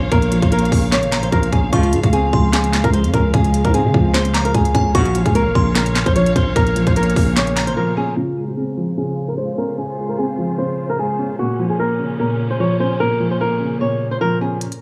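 A thumb-plucked flamenco guitar carries the melody up front in this dreamy, wistful half-time trap excerpt, joined by a soft, felt-muted upright piano with audible action noise and lush, bowed symphonic strings, all three softened by a low-pass filter. A growling, buzzy 808 bass and an up-front trap kit with a hard-clipped kick, sharp snare, crisp hats and handclaps drive the first half. A delicate, tinkling FM bell sits in the background, and bright classical brass stabs land at 1.7 and 4.9 seconds, before a break at 7.8 seconds gives way to a filter sweep over the dry, gritty small-room sound, with the drums returning briefly at the close.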